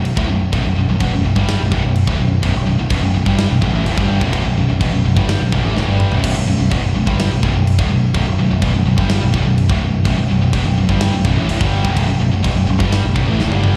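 A heavy, dark heavy metal riff in B minor kicks off at once at 126 BPM, with a scooped high-gain guitar and two tight distorted guitars, one double-tracked and both carrying a slapback echo, sitting in the background over a growly, punchy picked electric bass that stands up front. A tight metal drum kit with a medium-tuned snare and a tight kick drives the straight 4/4 feel, adding fills at 5.8 and 13.4 seconds alongside crash cymbal and toms. The whole passage has the feel of a live gig heard through the venue's PA, with small room ambience and recital hall reverb, and it is cut from a longer piece.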